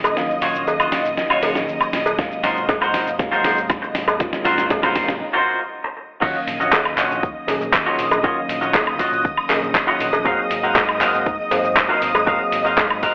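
Over a straight 4/4 groove, this nu-disco excerpt builds from a drum fill into a brief break and then a drop at 6.2 seconds, with a sleek, cosmic mood and a telephone-like overall sound set in a moderate plate reverb. The dusty sampler-style kit sits up front with a gritty, fat snare, handclaps, hi-hat, shaker, woodblock and crash, joined by a cowbell, while an overdriven, punchy electronic kick enters at 2.2 seconds. A round, dark hollow-body bass stays in the background, and a clean, compressed electric guitar plays an up-front riff from 0.4 seconds, coloured by lush chorus and a low-pass filter. A worn, slightly out-of-tune tine electric piano adds mellow accompaniment with slapback echo, a low-pass filter and sidechain pumping. Above it all, a vintage sawtooth string machine holds slow-attack sustained chords with ensemble chorus and pumping, as the harmony alternates between Ebm9 and Ab13.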